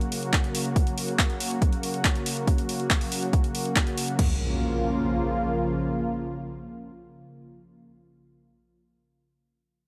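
A light reverb and digital ambience frame this short cut from a longer uplifting trance piece, soaring and emotional, at 140 BPM in straight 4/4 and Bb minor, tuned to A4 = 439 Hz. A lush, thick unison pad built from detuned sawtooth voices holds sustained chords from Db3 to F4 for the whole 7.5 seconds, its slow attack and long release softened by chorus and shaped by sidechain pumping. Up front beside it, a punchy analog drum machine supplies crash cymbal, handclaps and hi-hat with overdrive, joined at 0.3 s by a dry, overdriven electronic kick that sits loudest in the mix. The harmony rests on Gb before moving to Bbm at 4.2 s, when an electronic impact enters beneath the pad and runs to the close as the drums fall away just after.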